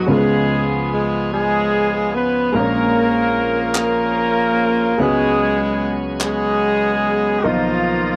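Soulful and hopeful, this slow gospel passage in 6/8 pairs a breathy, smooth-topped alto saxophone melody with a punchy, vintage horn section, over clear grand piano accompaniment and full, shouting tonewheel organ chords with fast rotary speaker and light overdrive, while hollow group handclaps join from 3.7 to 6.6 seconds and the chords move from C#7 through A#m7 and C#7sus4 to Bmaj7 in a dry, close 1970s-style studio sound with small room ambience.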